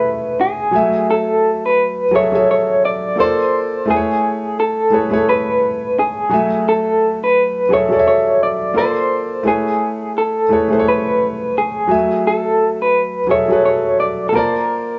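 From the first second, a picked electric guitar and a grand piano play together in this soulful R&B piece, cut from a longer work. The guitar carries the melody between G#4 and D5 through a small old amp, its slightly broken-up, lo-fi tone shimmering with tremolo and sitting up front. The piano accompanies from F#3 to A5 with an intimate, natural sound, short sustain and audible action noise, also placed close to the listener. At 86 BPM in 4/4 with a gentle 16th-note swing, the harmony circles through lush chords: Amaj9, F#m9 and Bbmaj9, returning to Amaj9 at 3.9 seconds and again at 9.4 seconds. The two players perform live in one room, framed by a moderate large-studio reverb that gives the warm mood a soft sense of space, and the tuning sits slightly high at A4 = 441 Hz.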